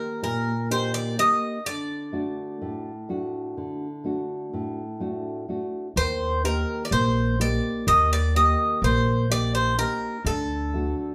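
A straight, even pulse in nine-eight drives this reflective, melancholic piece of Greek folk music, cut from a longer performance. The bouzouki carries the melody from the start, its picked double strings bright and metallic, some doubled at the octave, and placed up front. Beneath it, a nylon-string guitar gives dark, thumb-plucked accompaniment with a deep classical tone that also sits close to the listener. At 6.0 seconds the music moves into a new section, and an upright bass enters, its pizzicato steel strings sounding woody and thumpy. The harmony rocks between Eb and D, and the trio, playing live together in one room, is bathed in a wet studio reverb.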